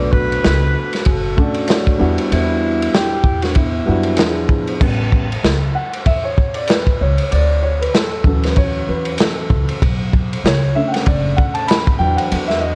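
Swung sixteenths at 96 BPM in 4/4 drive this cool, smoky jazz-hop fragment in E dorian, where a gritty, up-front breakbeat kit with dark cymbals and a tight kick sits over woody, thumpy pizzicato upright bass as a distant, breathy alto saxophone with light vibrato carries the melody and a ringing vibraphone adds a background second line until 4.5 seconds, after which the dark grand piano with long sustain takes a mellow solo from 4.8 seconds over an A7-Dmaj9-Bm9-Em9 progression before a short break at 12.3 seconds, all set in light small-room reverb.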